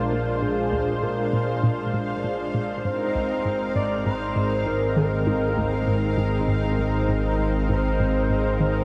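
Cosmic and mysterious, this short cut from a longer piece of ambient, sequencer-driven space music moves at 99 BPM in a straight 4/4, drifting from Bb7 to Abadd9 at 2.8 seconds inside a dreamy mix soaked in huge reverb. A lush, thick unison pad sits up front with chorus and shimmer reverb, while a dark, retro pulse-width lead carries the melody with vibrato, chorus, delay and shimmer. Beneath them a fat, saturated analog bass holds the low end, a hollow, bouncy square pluck enters at 0.1 seconds with a riff in the background through chorus and delay, and a faint bubbling texture of random resonant filter steps glints above.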